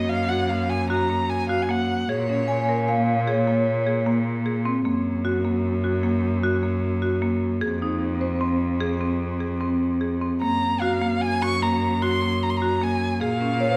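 Driving along in a straight 7/4 at 151 BPM, this short excerpt of contemporary chamber music feels hypnotic and urgent, its harmony circling through Gb, Bbm7, Fm7 and Gbadd9. A woody marimba struck with medium hard mallets runs arpeggios from start to finish, percussive yet smooth in tone. Beneath it, a single bowed cello holds the bass up front, rich and focused with vibrato and a smooth top. A dark, bowed violin carries the melody in two brief phrases, from the start to 3.3 seconds and again from 10.4 seconds, its woody voice shaded with vibrato and portamento. A close-miked vibraphone played with soft mallets adds a mellow, ringing second line between 2.5 and 4.0 seconds and returns briefly at the very end, dry and full with a medium motor vibrato. The ensemble sits in a recital hall with a lush, reverberant tail.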